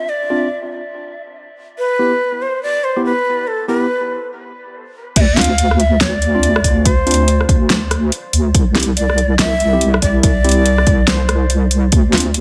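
A breathy, chiffy shakuhachi with vibrato carries the melody through dub echo over clean tine electric piano stabs in this cavernous, meditative deep dubstep cut in D dorian at 142 BPM with a swung half-time feel, and at 5.2 s the drop brings in a dark, saturated wobble bass with chorus, a tape-warm deep house kit with fat snare and metallic hats, and a layered electronic kick, all set in digital ambience.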